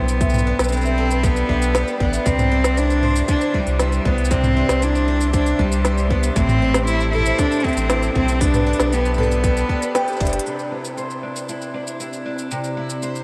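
A straight 4/4 groove from a tight, tape-colored electronic kick and an organic electronic kit with a woody snare, crisp hats, shaker and toms drives this pastoral, playful folktronica, cut from a longer piece and soaked in a huge, dreamy reverb. An intimate, airy-bowed cello sings the melody up front over a round sine sub bass, bright picked steel-string guitar arpeggios dressed in lush chorus and tape echo, a woody rosewood marimba line in the background, and a warbling, nostalgic lo-fi pad holding sustained chords. After a band accent at 10.0 s and a drum fill at 10.2 s, the cello, bass, kick and marimba fall away, leaving guitar, kit and pad as a filter sweep moves across the pad from 10.5 s.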